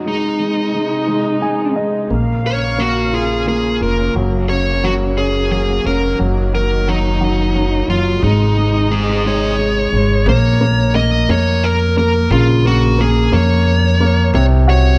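An overdriven, dark electric lead guitar carries the melody of this aching, melancholic six-eight pop ballad in Bb minor at 59 BPM, over a clear, polished baby grand piano that adds a short fill at 1.1 seconds, soft bowed strings that stop at 10.2 seconds, and a woody, thumpy pizzicato upright bass entering at 2.1 seconds, all heard through light studio reverb and worn, warbling cassette tape.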